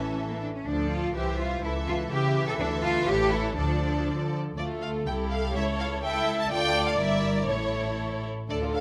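A quick classical-period movement for string orchestra in D minor, this short passage taken from a longer piece moves at 122 BPM in 2/4 with a rubato feel and a restless, urgent mood. The first violins carry the melody high in their range with a warm, vibrato-laden tone, while the second violins spin a smooth, even second line beneath them. Violas fill in the accompaniment with a lush sound, and the cellos and double basses share the bass, the cellos heard close and the double basses sounding distant yet up front. All five sections play together for the full 8.8 seconds, stating the same phrase twice, once from 0.0 and again from 4.6 seconds. The harmony circles around D minor and its dominant, with touches of C major and a diminished chord before settling on A, all captured by close, detailed microphones with light reverb.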